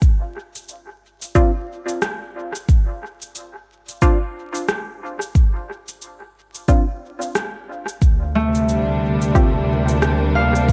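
A deep, tape-warm electronic kick sits up front through this spacious ambient dub excerpt, pulsing at 90 BPM in 4/4 with a swung sixteenth-note feel in D minor. Around it, a quieter electronic shaker and rim click trail off into dub echo, both carrying the boxy colour of a small room. From 1.4 s a muted, mellow sawtooth chord stab with a filter pluck and fast, decaying attack drifts through analog chorus, cassette tape grit and dub echo over a Dm7 harmony. At 8.0 s the chord shifts to Csus4/D as a lush, bowed studio string section enters up front with smooth vibrato, soon joined by a bright, ringing concert harp playing arpeggios through analog delay. A breathy, wind-like tuned noise texture hovers in the background from 8.7 s, while the whole mix sits in an echo-heavy digital ambience flecked with vinyl crackle and a faint mains hum.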